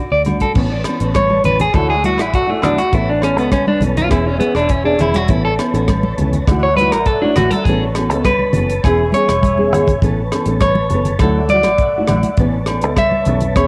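A homespun cassette recording steeped in moderate spring reverb carries this sunny highlife guitar band excerpt at 102 BPM in 4/4, where an up-front, clean, picked electric guitar solos in arpeggios with tape echo over Aadd9, Dadd9 and E6 chords, backed by a dark, round fingered bass, a full-bodied, thumb-plucked nylon-string guitar with finger squeak, a tight, polished funk drum kit with bright cymbals and a fill at 9.3 seconds, soft-handed congas and ringing agogo bells in the background, and a smooth tonewheel organ holding sustained chords through a slow rotary speaker with key click.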